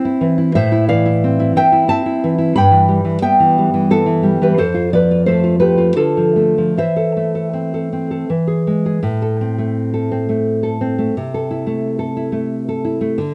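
A solo nylon-string guitar opens on a C chord and settles quickly into A minor, sounding up front with a thumb-plucked, classical touch. This is a romantic classical guitar piece in 3/4, melancholic and wistful, moving with a rubato feel somewhere between 73 and 91 BPM. The harmony drifts from Am through Em/G, F and Dm before reaching Am/E and an E chord that leads into a new section at 9.0 seconds. That second passage returns to Am and then Am/C, the guitar ranging from a low F2 up to B5. Light reverb and a dark, warm production give the instrument an intimate, shadowed glow, and the recording is a fragment cut from a longer piece.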